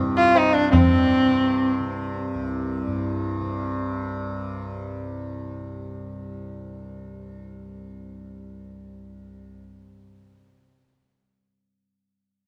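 A buzzing, shimmering tanpura drone opens this meditative, solemn Hindustani classical fragment, cut from a longer piece at 160 BPM in 4/4, and sounds up front until 10.6 s. At 0.2 s a single bowed sarangi enters up front, gliding with portamento and light vibrato in a focused, smooth-topped tone, its sympathetic strings ringing, while a high-tuned, dry tabla adds a brief accent. The sarangi falls silent at 2.2 s, leaving the drone in a dark, warm recital-hall reverb.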